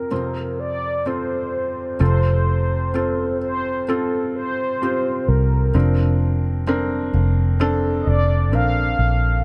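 A dark, round, foam-muted electric bass sits up front in this hopeful, emotional pop ballad excerpt at 64 BPM in Bb major, entering at 2.0 s beneath a felt-muted upright piano whose soft, intimate tone carries audible action noise. Above them, a mellow horn-like synth lead with a detuned sawtooth core, soft attack, vibrato, filter sweep and chorus sings the sustained melody. The close, dry sound moves from an F chord to Bbadd9/F at 5.7 s.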